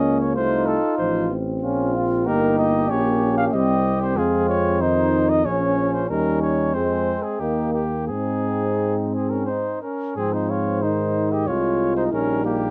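In a rubato 3/4 at 93 BPM, this noble, stately classical brass quintet fragment in Ab major sets a mellow, softly attacked cornet melody up front with light vibrato, joined by a trumpet second line, while a dark, smooth-topped French horn and a background trombone carry the accompaniment over a forward tuba bass, all heard through light reverb and the warbly pitch drift of worn old cassette tape.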